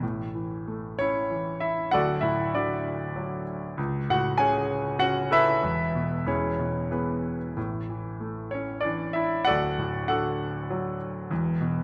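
Sunny and relaxed, this lyrical classical solo piano passage sways in a gentle three-beat metre with a free, rubato feel, lifted from a longer piece. A clear concert grand sits up front with a natural tone and deep bass, moving through a simple progression that settles on A, D and E chords, including a brief Esus4 at 5.6 seconds. A moderate recital hall reverb lends the 11.8 seconds a soft sense of space.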